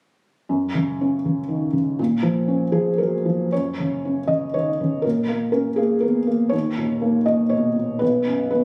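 This neoclassical minimalist piano piece is hopeful and intimate, moving at 121 BPM in 3/4 with a loose, rubato feel in F# major, tuned to A4 = 438 Hz. A felt-muted upright piano plays alone from 0.5 to 8.6 seconds, ranging from B1 to D#5, its tone soft, mellow and vintage and placed up front in the mix. The harmony circles through F#5 and A#m twice, then moves to D#5 at 6.5 seconds and B5 at 8.0 seconds, with a new section beginning at 3.5 seconds. The sound carries a moderate recital hall reverb with a 1.4-second decay, captured on a phone in the room and then given studio reverb and compression. It is cut from a longer piece.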